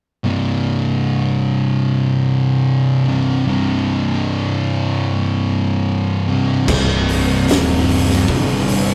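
A rough, tube-saturated rehearsal-room sound with a wet small-room reverb carries this sludgy, ominous stoner and doom metal excerpt, where two thick, up-front fuzz guitars, one warm and one dark, pick a low riff from the start before an overdriven fingered bass and an oversized low-tuned drum kit with a punchy kick, fat snare, dark cymbals and gritty saturation crash in together at 6.7 seconds.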